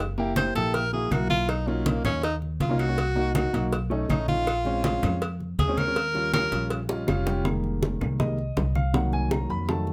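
A warm, vibrato-laden tenor saxophone solos up front through the first 6.7 seconds of this fiery, driving Afro-Cuban jazz excerpt, over woody pizzicato upright bass, tight high-tuned cowbell and bongos, damped low-tuned congas, faint claves and an intimate grand piano with audible action noise, which takes a short fill and then its own solo from 7.4 seconds, all in light reverb.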